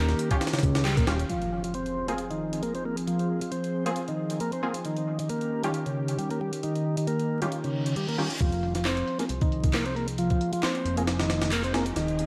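Breakbeat at 135 BPM in F minor with a swaggering, gritty mood, built on an up-front tonewheel organ riff with key click and slow rotary speaker over a swirling phased analog pad, bold orchestra-hit-like synth stabs and a faint overdriven analog drum machine of handclaps and hi-hat, while a compressed, pitched-up sampler breakbeat kit with thumpy kick and high-tuned snare and a fat, saturated analog bass play until 1.2 s and return at 8.4 s for a filter-swept build-up, as an impact, reverse cymbal and riser add electronic effects and vinyl crackle colors the echo-heavy mix.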